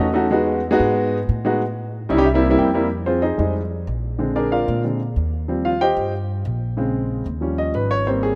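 A clear grand piano and a pizzicato upright bass open together in this sophisticated, fiery Afro-Cuban jazz excerpt, the piano playing a brief fill before colourful extended chords arrive. Sitting up front with an intimate, natural tone, the piano carries audible action noise, while the woody, dark bass on steel strings sits lower in the mix beneath it. After another short piano fill, the piano moves into a solo at 2.9 seconds over a minor-key progression that runs to the end at 8.4 seconds. A moderate, lush hall reverb surrounds the pair, and the overall sound has the rough quality of a home demo mix.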